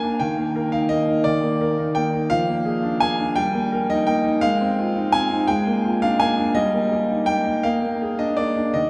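This cheerful, elegant passage from a classical-period piano sonatina moves in 6/8 at 57 beats per minute, counted in dotted quarters with a straight feel, in Eb major. A solo concert grand piano carries the whole fragment, sitting up front with a clear, smooth tone, deep bass and a vintage character, ranging from Eb3 to Ab5. It opens on a single Eb5 at 0.2 seconds, then moves through a graceful chain of chords built around Eb and Bb7, touching Fm7 over Ab along the way before settling on Bb7 at 7.6 seconds. The instrument's long sustain blends into a heavily wet cathedral reverb with a 6.8-second decay, placing the playing in a vast, echoing space. Cut from a longer piece, the fragment lasts just under nine seconds and presents a single section.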